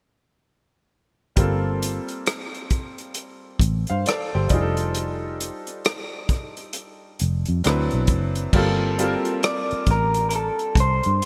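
A slow 67 BPM groove in 4/4 with a swung sixteenth-note feel sets this late-night, soulful R&B and neo-soul excerpt in G minor, as a roomy, tight-kicked soul drum kit with a rolled-off top, a dark, round, foam-muted electric bass and a brilliant baby grand piano all begin at 1.4 seconds, moving through Gm11, F13 and D13 before returning to Gm11. At 9.5 seconds, shortly after a new section begins at 8.5 seconds, an electric guitar through a small old amp takes the melody with a picked, slightly broken-up, lo-fi tone. A lush hall reverb and bright 1980s-style digital production frame the whole fragment, which is cut from a longer piece.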